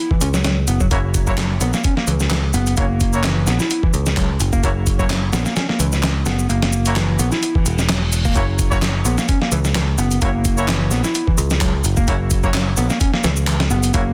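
A densely limited, lightly reverberant mix opens this funky, swaggering breakbeat cut at 129 BPM with a gentle 16th-note swing, where an overdriven picked electric bass riff with tube saturation, 12-bit sampler grit and delay rides over a growly, up-front picked bass line, a dusty, thumpy sampler-style soul kit, a layered electronic shaker and handclaps recorded in a large room, and distant, roomy horn stabs doubled in octaves, until a reverse cymbal at 7.6 seconds ushers in the drop at 8.4 seconds.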